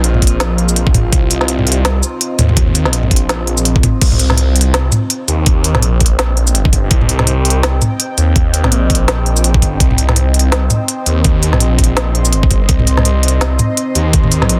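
A dense, heavily limited modern master set in digital ambience opens this heavy, cinematic piece of half-time drum and bass at 166 BPM in C minor, cut from a longer work and resting on a C minor chord. A knocking, overdriven electronic kick sits up front from 0.2 s, joined by an organic electronic kit with a woody, soft-clipped snare, crisp hats, shaker, toms and crash cymbal, all re-recorded in a small room with a tape-warm tint and a swung half-time feel. Beneath them a swirling, thick phased saw bass, detuned in unison and saturated, holds sustained low notes with a fast attack. A deep, moody pad carries sustained chords, its vintage warbling chorus, built-in reverb and sidechain pumping adding a dark haze. An eerie, metallic FM drone hovers faintly with chorus and reverb until 4.0 s, when the drop continues with the remaining parts pressing on to the end.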